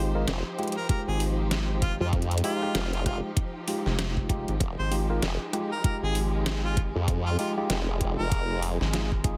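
Heavily compressed with a radio-like digital ambience, this funky, playful glitch hop excerpt in F minor rides a 97 BPM groove with swung sixteenths over a single Fm9 chord, as a rubbery, hollow square bass and a distant, lush string section with sidechain pumping sit beneath worn, slightly out-of-tune electric piano stabs that carry dub echo. A detuned, wobbling formant-sweep bass with chorus and tube saturation arrives at 0.3 s alongside a dubstep kit of deep snare, rim click and metallic hats, and an up-front knocking electronic kick joins at 0.9 s. Floating on top, a clear harmonica solo with light vibrato and scooped notes sings through dub echo in a smooth, pop style.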